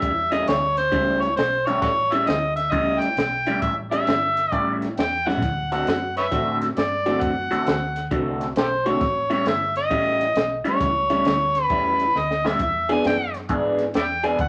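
Opening together, an overdriven, gritty amplified harmonica leads this laid-back electric blues shuffle with light vibrato, tongue slaps and scooped notes, up front over a dark, slightly broken-up, phaser-tinged guitar riff from a small old amp, a round, foam-muted vintage bass and a compact cocktail kit with a punchy kick and high-tuned snare that adds fills at 5.2 and 12.1 seconds, as the changes move from A7 to D7 and back before turning to E7, inside a wet club reverb.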